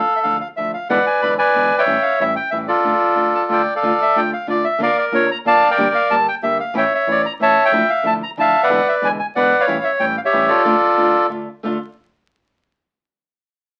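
A reedy, bright bandoneon opens the fragment up front at 0.0 s, carrying a tense, melancholic tango melody in D harmonic minor at 184 BPM in 3/4, with a rubato feel and tuning at A4 = 442 Hz. A small, fingerpicked nylon-string guitar enters at 0.2 s as a softer acoustic accompaniment beneath it, moving through a short opening passage before a second section begins at 3.8 s, with harmony circling from Dmadd9 through E7 and A7 back to Dm. The sound of a very old 78 rpm record, with vinyl crackle and a wet studio reverb, frames this fragment of a longer piece.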